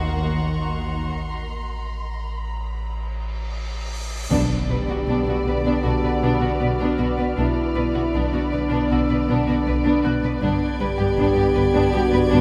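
Tense and uneasy, this cut from a longer suspense film score moves at 77 BPM with uneven beats, its strings all bowed sul tasto: a dark violin section carries the melody over a rich second violin line, a woody viola section and a warm cello section with a pure, floating double bass section, joined by a high, clear violin texture, a very quiet bright piano with audible action noise, a grainy, flickering granular pad with its own built-in reverb and a deep, clean sine sub bass drone with subtle chorus. A huge, dark cymbal swell rises from 3.4 seconds into an impact at 4.3 seconds, where the harmony settles into B minor and a very quiet timpani with hard mallets strikes alongside the entry of a smooth-topped trombone section, followed at 4.7 seconds by a mellow, distant French horn section holding chords. The whole ensemble sits in a vast, echoing cathedral reverb.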